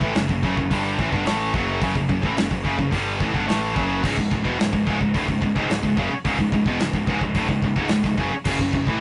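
A rough rehearsal-room recording with saturated, dulled highs and light reverb frames this heavy, epic metal fragment cut from a longer piece. A scooped, high-gain guitar leads the riff up front, backed by two tight distorted guitars in the background, one of them double-tracked, while a fuzzy, overdriven picked bass sits low beneath them. An acoustic drum kit in a small, pumping room drives the straight 4/4 feel with a tight kick, medium-tuned snare, hi-hat and bright crash cymbals, as the harmony moves from F#5 to C#m and back to F#5 at 8.5 seconds.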